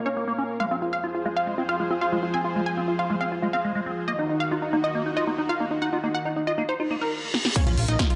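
Euphoric and emotional, this uplifting trance excerpt at 138 BPM opens on a lush, airy supersaw pad and a detuned unison pluck melody, both pumping against the sidechain, while a squelchy liquid acid bass arpeggiates through a long filter sweep with phaser, chorus and digital delay over Bbm, Fm and Ebmadd9 chords. A reverse cymbal and sub drop arrive at 6.9 s, and a punchy, overdriven analog drum machine fills at 7.3 s. At 7.6 s a tape-warm layered kick lands on the impact back on Bbm, with a funky, wave-folded plucky bass following at 7.7 s. The production is dark, with a moderate digital room reverb.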